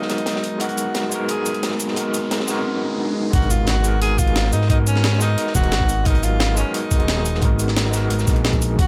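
A light reverb and small-room ambience frame this rolling, melancholic liquid drum and bass cut at 176 BPM in G# dorian, where a clear tenor saxophone carries the melody through a low-pass filter and dub echo over a barky, overdriven tine electric piano with medium tremolo and tape echo sitting up front on a G#m9 chord. A gritty sampler-style breakbeat kit with cabasa, hi-hat and snare drives the build-up, backed by a dark, crunchy acoustic breakbeat kit in the background, while electronic riser, swell and impact effects enter at 0.8 seconds. At 3.3 seconds the drop lands with a thumpy electronic kick and a smooth, gliding sawtooth-and-square synth bass that sits up front with portamento.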